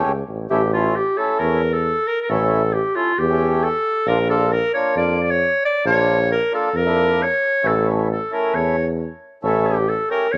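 A straight 4/4 pulse at 134 BPM drives this festive, soulful klezmer excerpt in A phrygian dominant, tuned slightly low to A4 = 439 Hz and cut from a longer piece. A reedy, full accordion supplies accompaniment from the start, its mellow tone-chamber voice sitting mid-forward, while a tuba carries the bass up front with a light vibrato, soft attack and scooped notes in a jazz-inflected style. At 0.5 seconds the clarinet takes the melody in a classical manner, up front yet distant and roomy in character. The harmony moves from A to Bb at 4.1 seconds and returns to A at 7.6 seconds. A moderate echo chamber reverb with a 1.4-second decay gives the recording an open, resonant space.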